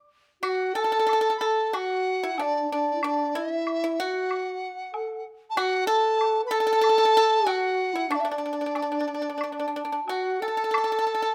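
A mellow, hollow large dizi carries the melody up front, its buzzing membrane and airy, tongued tone shaded with vibrato, in this festive yet graceful Chinese traditional chamber piece cut from a longer work, moving at a rubato 94 BPM in 4/4 within the D gong mode. Beneath it, a pure, expressive low xiao adds a tongued, vibrato-rich second line, while a bright, dry pipa played with fingerpicks offers a percussive second voice and a close, acoustic woodblock marks time from 0.4 seconds. Light reverb and close, detailed microphones give the ensemble an intimate sound through to the end at 11.3 seconds.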